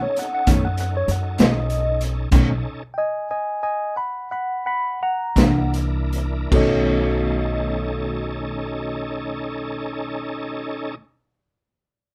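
A bright, clean tine electric piano opens this gritty, rollicking slow blues in 12/8, taking a solo up front through a phaser, while a dark, fingered electric guitar with tremolo and a tonewheel organ holding shouting, lightly overdriven chords through a slow rotary speaker with chorus vibrato and key click sound from the very start. A raw garage drum kit joins at 0.2 seconds with crash, hi-hat, a medium-tuned snare and a boomy kick, sounding saturated with a rolled-off top in a small, pumping room, and a woody pizzicato upright bass on steel strings enters soon after. The band slows down from about 1.1 seconds until the second section, with a stop falling inside that stretch, and the harmony shifts from B9 to C9 before returning to B9 as the second section begins. The drums fall away at 6.7 seconds, leaving piano, guitar, organ and bass to carry the rest. The sound is a rough home demo mix with little reverb, cut from a longer piece.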